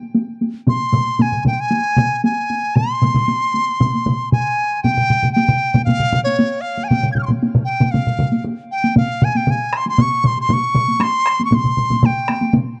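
Japanese traditional taiko drum ensemble music, powerful and driving at 116 BPM in a straight 4/4 that speeds up throughout, opens with the taiko ensemble striking with heavy sticks in a small room before a bright, reedy bamboo dizi with a buzzing membrane enters up front at 0.7 seconds, its pure, tongued melody with vibrato ranging between Db5 and Ab6 in the miyako bushi mode on C, while two solo taiko drums, one set in the background, join at the same moment, all captured in a dry, close 1970s-style studio sound touched with light reverb.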